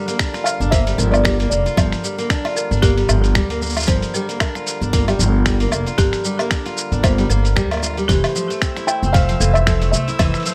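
A lightly swung 114 BPM groove in 4/4, built from a tight electronic kick and a muffled, sampler-style kit of finger snaps, hi-hat, shaker and woodblock, carries this intimate, autumnal folktronica piece in G dorian, where a woody pizzicato upright bass with tube saturation sits up front under picked steel-string acoustic guitar arpeggios with audible finger squeak and tape echo, reedy sustained accordion chords, a dry, rustic marimba second line in the background, and a boxy, felt-muted upright piano melody that plays from 0.4 to 3.6 seconds and returns at 8.9 seconds, joined at 8.5 seconds by a grainy, flickering texture shortly after the chords move from Gm7 to Fmaj7.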